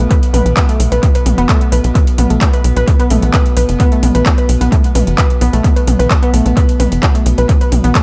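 An overdriven, punchy electronic kick sits up front in this relentless, hypnotic peak-time techno excerpt, alongside a tight, nasal sawtooth sequencer bass pumping against it, a layered drum kit of handclaps, metallic hi-hats and toms touched with analog delay, a warbling, lo-fi detuned pluck riff carrying chorus, tube saturation and dub echo, and an eerie, inharmonic ring-modulated drone sustained in the background, all set in an echo-heavy digital ambience.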